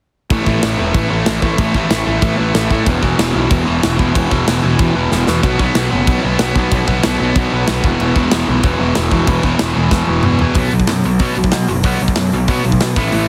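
A heavily compressed, radio-style sound with light reverb frames this rowdy, upbeat punk rock excerpt, driving along at 187 BPM in a straight 4/4. An overdriven, double-tracked electric guitar sits up front with a picked riff in its low register, moving through A5, E5, B5 and back to E5. Beneath it, a bright, growly picked electric bass, direct and amped, adds fuzz and overdrive to the low end. An acoustic rock kit recorded in a big room also sits up front, with a punchy kick, a medium-tuned snare, crash, hi-hat and toms, and drum fills arrive at 5.1 and 9.9 seconds. At 10.6 seconds the music shifts into a new section that lands on B5 before the cut.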